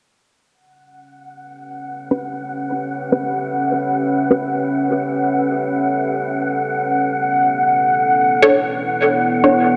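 At 76 BPM in 4/4 with a light swing on the sixteenths, this short ambient excerpt from a longer piece feels spacious and deep, moving from A7 to Bm7 at 6.8 seconds. A breathy, wind-like tuned noise texture enters first at 1.3 seconds, holding on F#5 with a slow attack and long release inside its own reverb. A deep, moody pad of detuned sawtooth and sine layers with a sub octave fades in underneath, sustaining chords from B3 to F#5 with chorus and a mellow tone. From 2.1 seconds a filtered dub chord stab cuts through as the loudest part, its plucky, wave-folded pulse and sawtooth tone passing through a phaser and dub echo while a filter sweep runs across it. The whole mix sits in an echo-heavy chamber reverb with a moderate tail, giving the dark textures a cavernous, floating sense of space.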